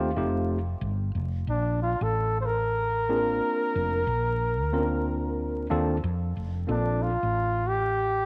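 A small room's light reverb and vinyl crackle frame this swung 92 BPM hip hop excerpt in Bb major, where a breathy, mellow flugelhorn with vibrato and slapback echo carries the melody over a worn, slightly out-of-tune tine electric piano that stops at 7.1 seconds and a round, punchy fretless electric bass, moving from F7 to Bbmaj7 in a mood both warm and cool.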